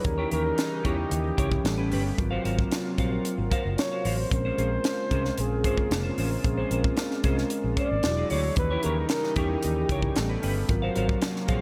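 A breathy, close-miked flugelhorn leads this polished 1980s jazz-funk pop excerpt in Bb minor at 113 BPM, its dark, whispered line scooping into notes with vibrato and trailed by slapback echo and delay until 10.4 seconds. Around it sit a mellow tine electric piano glazed in lush chorus, a clean picked electric guitar riff with analog chorus, and a shimmering pulse-width pad holding slow-attack chords in the background, moving through rich extended harmonies like Eb7b9, A9, Ab13 and Bbm9. A dry, up-front funk kit with a high-tuned snare and tight kick drives the groove alongside a round, foam-muted bass, all set in a lush hall reverb that gives the nocturnal, urban mood a big arena sound.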